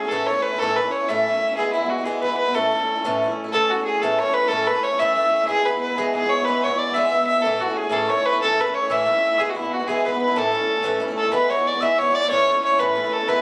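Lively and rollicking, this Celtic folk jig in 6/8 moves at 123 BPM in A major, cut from a longer piece, with chords shifting between A and E. A single dark, nasal, woody fiddle carries the bowed melody up front with light vibrato and plate reverb, while a boxy picked swing-style acoustic guitar gives warm accompaniment. At 3.5 s a mellow, airy tin whistle with tongued chiff and hollow, lifted highs joins in the background on a second line, all captured on a phone in a small club room with compression.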